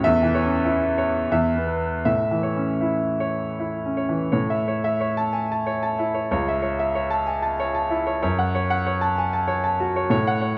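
A bright, brilliant grand piano with a vintage character and long sustain sits up front in a moderate recital hall, its reverb lending a natural sense of space. This stormy, passionate romantic character piece for solo piano moves in 3/4 with a free rubato feel, its tempo flexing between 77 and 101 BPM. Set in A major and tuned slightly low to A4 = 437 Hz, the piano covers a span from C#2 to A5, opening on a C#m/E harmony before settling onto A around 2.0 seconds. A new section begins at 4.3 seconds, where the harmony passes through A/C# and then darkens to F#m. Cut from a longer work, the passage runs about 10.6 seconds.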